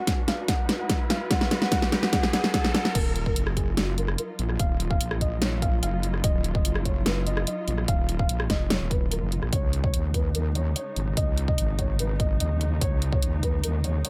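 This short, chaotic and heavy wobble dubstep clip, cut from a longer piece, opens with a build-up: a riser hovers in the background beneath a drum fill while a felt-muted upright piano carries the melody, its soft, boxy tone touched by tape echo and audible action noise. Under it, a muted studio string section holds sustained chords, veiled and con sordino, with vibrato and a sidechain pumping effect. At 3.0 seconds the riser stops and a saturated sawtooth-and-sine wobble bass enters up front with overdrive and chorus, a filter sweep running across it for the rest of the clip. The half-time groove rests on a punchy, layered electronic kick and a dubstep kit whose huge snare, rim clicks, hi-hats and crash cymbal sit forward in the mix, re-recorded in a small room. Chords move from Abm7 to Ebmadd9 and then to Dbsus2 at 9.5 seconds, and the dry mix keeps the drums and bass dominant over the dark piano and strings.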